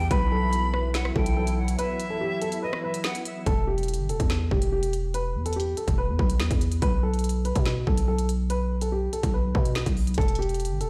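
Heard through a big sound system in a bare stone room, this ominous, cold drill cut rides a half-time feel as a dark, mellow baby grand piano with audible action noise carries the melody through a low-pass filter; an airy, distant jazz flute with vibrato and tape echo, plus a detuned sawtooth pad with chorus, drop out by 3.5 seconds after a break, while a growling, buzzy 808-style bass and an up-front electronic kit of hard-clipped kick, woody snare, crisp hats, rim clicks and finger snaps drive on.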